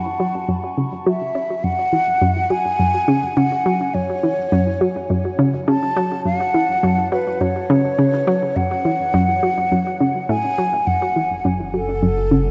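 Cosmic and hypnotic, this ambient space-music excerpt is driven by a sequenced analog pluck riff, steady in a straight 4/4. The pluck sits up front with a round, nasal bite, treated with chorus and delay. Over it, a concert flute carries the melody from the start, its breathy, hollow tone shaped by vibrato, a soft attack and echoing delay. A filter sweep moves across the arpeggiated synth sound until 10.9 seconds, when the harmony shifts from an open F#5 to F# minor. At 11.6 seconds a low analog drone joins as the bass, warbling and vintage with pulse-width movement and chorus. The whole piece sits in a huge, wet reverb with a long tail, and the passage is cut from a longer work.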